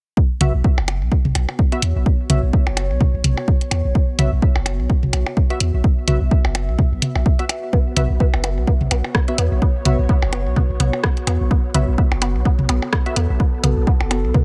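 A clinical digital ambience frames this quirky minimal techno excerpt at 127 BPM, swung on the sixteenths and resting on a Bsus4 chord, where a punchy, tape-warm electronic kick and a deep, sine-like sub bass with a pitch-drop attack sit up front. Around them, a layered garage kit of hi-hat and rim click, tape-colored electronic toms and percussion blips, hollow, dark organ-like stabs with analog chorus and delay, and a nostalgic, lo-fi warbling pad pumping under sidechain build the groove. At 7.7 seconds a bright, squelchy resonant blip pluck joins on a single B3, treated with phaser and dub echo.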